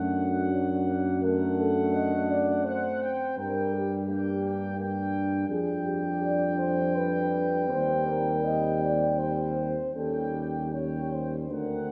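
Classical brass band music in a hymn-like vein, this solemn, melancholic passage is cut from a longer piece and moves in a flexible three-beat rubato. A tight, dark trumpet section carries the melody from a distance, while a smooth-topped French horn section sings the second line, and a clear trombone with light vibrato and a vintage-toned euphonium with vibrato sit in the background as accompaniment. A present tuba anchors the bass up front, and the band is heard from further back in a wet recital hall.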